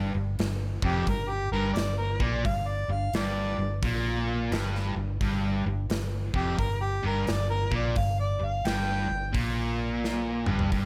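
Under light reverb, this gritty, driving blues rock and southern rock clip pairs an up-front, double-tracked overdriven electric guitar riff with a dark, round, foam-muted fingered bass and a big-room acoustic drum kit with punchy kick, while a mellow, overdriven harmonica with slapback echo and scooped, lightly vibratoed notes plays a jazz-style solo from 0.9 to 9.3 seconds before a drum fill at 10.0 seconds.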